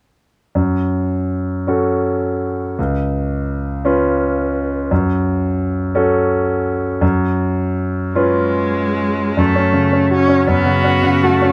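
A bright concert grand piano carries the accompaniment from 0.6 seconds, its deep bass and long sustain ringing through a slow, rubato romantic movement for piano quintet in F# minor. The music moves in 6/8 at roughly 46-58 BPM in dotted quarters, with a yearning, melancholic mood as the harmony turns between F#m and C#7. At 8.2 seconds a single bowed cello enters with a smooth, even second line touched with vibrato. A lone violin joins the melody at 10.5 seconds, expressive and sliding with portamento, shortly after the passage moves into a new section. Close, detailed microphones and little reverb keep the sound intimate in this short excerpt cut from a longer piece.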